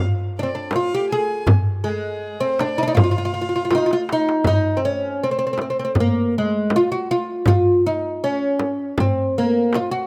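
Longing and soulful, this short cut from a longer Arabic maqam ensemble piece moves at a steady 80 BPM in a straight 4/4, tuned to A4 = 445 Hz. A woody, fretless oud carries the melody up front, its plectrum-plucked double strings ringing between Ab3 and Ab4. Beneath it, a single bowed violin plays an intimate second line an octave higher with light vibrato, a soft attack and an airy sul tasto tone, before dropping out at 4.1 seconds. A crisp metal-shelled darbuka played with soft hands and a warm frame drum keep the pulse, both close and dry. A drum fill leads into the second half at 4.5 seconds, where the music settles into F maqam kurd. The sound is a rough home demo mix with little reverb.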